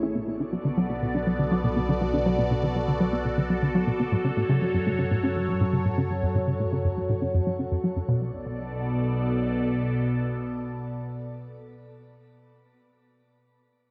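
Mysterious and expansive, this short cut from a longer piece of ambient, sequencer-driven space music moves at 121 BPM in a straight 4/4, in B minor. A punchy, funky analog bass riff drives the opening with a fast, decaying filter pluck, delay, shimmer reverb and a filter sweep, until it drops out at 8.3 seconds. Beneath it, an analog drone hums low with a wave-folded, evolving sawtooth and pulse-wave tone thickened by chorus, holding until 9.5 seconds. Up front, a swirling, airy phased analog pad sustains long chords through phaser, chorus and shimmer reverb, carrying on alone to 11.7 seconds. The harmony moves from Bm7 to F#m and back to Bm7, set in a dark production with a moderate plate reverb.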